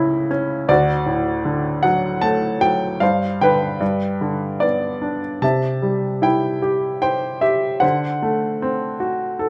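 Classical solo piano in a lyrical, peaceful vein, this short excerpt moves at 76 BPM in 3/4 with a flexible rubato feel in C major. A bright baby grand carries everything from C#2 to A5, its brilliant but worn tone sitting up front and intimate, with audible action noise and short sustain under a light reverb. The harmony drifts calmly from A/C# to D, through a Gsus4 settling onto G, arriving at C at 5.4 seconds before turning toward D7.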